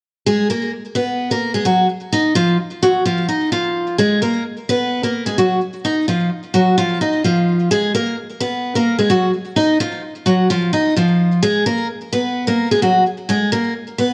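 A half-time feel in 4/4 gives this hip hop fragment a slow, heavy sway, even though it is cut from a longer piece. The sole voice is a picked steel-string acoustic guitar carrying the melody from 0.3 to 14.1 seconds, ranging from F3 up to Eb5 and sitting up front in the mix. Its tone is warm and acoustic, softened by a low-pass filter and trailed by a digital delay, while a moderate recital hall reverb and small room ambience lend it an auditorium quality. The harmony rests on Ebmadd9 before shifting to Absus2 at 11.4 seconds, and those open, unresolved chords lean the mood toward something both menacing and melancholic.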